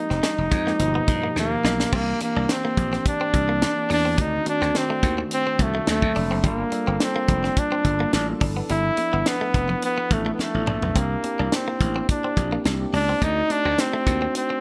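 A tight funk groove at 106 BPM in 4/4, with a light sixteenth-note swing, drives this breezy, upbeat slice of polished 1980s jazz-funk pop. The up-front acoustic drum kit has a high-tuned snare, a tight kick, hi-hat, crash and toms, with fills at 1.4 and 10.4 seconds. A growly, punchy slap bass and very quiet, damped, high-tuned congas fill out the groove. Over the top, a warm, up-front flugelhorn carries the solo melody in a pop style, with vibrato and scooped notes. In the background sit a mellow tine electric piano with subtle chorus and a bright, compressed, picked clean electric guitar riff bathed in lush chorus. The chords move through rich extended and altered harmonies such as Fm9, G7alt, C9 and D7b9, and light studio reverb adds to the glossy digital sheen of the production.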